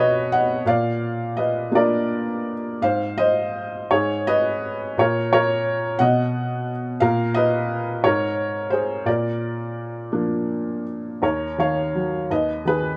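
Classical solo piano in Eb minor, wistful and reflective, moving in an unhurried rubato 6/8 at roughly 54-60 BPM. A single felt-muted upright piano carries everything from Eb2 to F#5, its tone soft, intimate and vintage, placed up front in light reverb as harmonies drift from B and Bb through Abmadd11 and Absus2. At 11.2 seconds the passage turns to a new section on Ebm7 before this short fragment of a longer piece breaks off on B/D#.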